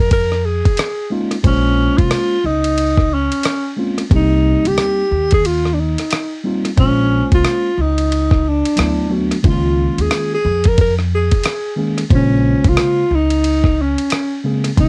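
Mellow and nocturnal, this jazz-hop cut from a longer hip hop piece moves at 90 BPM in 4/4 with a lazy 16th-note swing, sitting in Bb dorian. A breathy alto saxophone carries the solo melody up front, close-miked and intimate, with a whispered subtone, soft attack and light vibrato that take on a cassette-tape haze. Beneath it, a pizzicato upright bass supplies a woody, dark low end, while a gritty, compressed sampler-style drum kit with a thumpy kick, hi-hat, ride cymbal and rim click also carries that tape grain. A mellow, clean, direct tine electric piano joins at 1.1 s, accompanying over minor ninth and sixth-nine chords, and a brief break from 5.4 to 6.8 s sets up the return of the main section. The whole home-cassette recording sits in light reverb, giving it a cozy, late-night feel.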